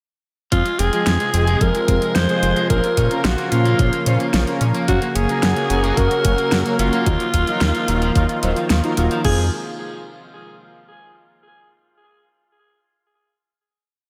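An 80s machine backbeat at 110 BPM in a straight 4/4 drives this cinematic, moody synthwave piece in F phrygian: a knocking, overdriven electronic kick sits under a pop kit of fat snare, warm closed hats and crash, both drums layered and re-recorded in a small room. A thick, detuned sawtooth bass with a filter sweep sits up front from 0.5 s, jumping octaves beneath a progression that moves from Fm through Bbm, Gb and Ebmadd9. A lush unison pad with slow attack and long release joins at 0.9 s, while in the background a twangy, slightly broken-up electric guitar plays an eight-step arpeggiated sequence through chorus and diffuse delay, and round, dark synth brass adds dotted-rhythm stabs with vibrato and vintage 12-bit sampler grit. Over this, a breathy, raspy alto saxophone carries a motif-based solo melody with scooped notes, vibrato and tape echo. The dreamy mix is soaked in a lush hall reverb, and the piece settles onto a final Fm chord at 9.2 s.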